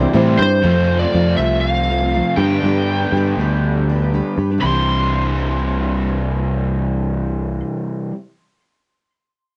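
Hopeful and open-road in feel, this rock excerpt opens with brief touches of clean, compressed twelve-string electric guitar, key-clicking tonewheel organ with chorus vibrato and a reedy electric piano in the first 0.6 seconds over a full-bodied jumbo acoustic guitar, while a double-tracked overdriven garage guitar riff and a round, punchy picked bass sit up front alongside a lead guitar melody through a small cranked amp with tape echo, in a lo-fi cassette home recording with light reverb.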